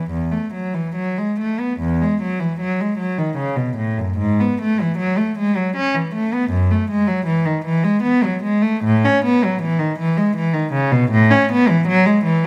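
This baroque-style suite movement for unaccompanied cello, a short cut from a longer piece, flows in a radiant E major at about 77 BPM in 3/4, its beats stretched and loosened by rubato. A single bowed cello plays up front in period style, its gut-string tone reedy and closely detailed as it ranges through its lower and middle register, with a new passage beginning at 1.8 seconds. A moderate concert hall reverb surrounds the close, intimate sound.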